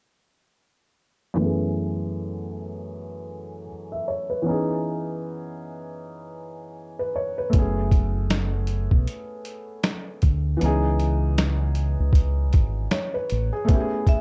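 Reflective and nostalgic, this lo-fi hip hop excerpt moves at 78 BPM in 4/4 with a 16th-note swing, opening at 1.3 seconds with a felt-muted upright piano that sounds soft and intimate, with audible action noise, cassette tape coloring and a filter sweep, as it moves through F#m11 and C#m9 chords. At 7.5 seconds a round, punchy fingered electric bass and a gritty boom bap sampler-style kit enter, the pitched-down drums carrying a thumpy kick and a medium-tuned snare with vintage 12-bit sampler grit. The progression lands on Amaj9 at 13.7 seconds, and a bright, ringing vibraphone note struck with hard mallets, carrying a slow motor vibrato, sounds briefly at the very end within a dark, warm production under light reverb.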